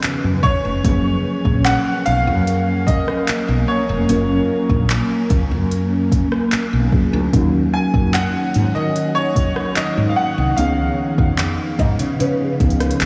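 A straight 4/4 groove at 74 BPM from a tape-warm, smooth R&B drum kit with a soft kick, smooth hi-hat, rim click and handclaps anchors this dreamy, smooth contemporary R&B excerpt in F# major, where a round, woody fretless bass with analog chorus sits up front beneath mellow tine electric piano and an ethereal, airy pad with phaser and sidechain pumping, while a clear grand piano carries the melody from 0.4 s and a thumb-plucked nylon-string guitar plays arpeggios in the background at the start and again from 11.8 s, the mix soaked in huge ambient reverb over C#7, F#maj7 and D#m7 chords.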